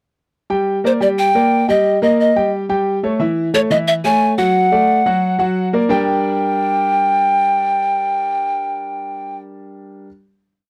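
A clear, vintage-toned grand piano opens this short, danceable Latin piece at 0.5 s, driving a montuno in octaves at a brisk 177 BPM in G harmonic minor. Soon after, an airy bamboo pan flute takes the melody up front with crisp, chiffy attacks and straight tone, shaping motif-based call phrases over the Gm, Eb, A and D progression. A brief verse gives way to a final Gm chord at 5.9 s, all captured in a dry, close 1970s-style studio sound with a snug booth ambience.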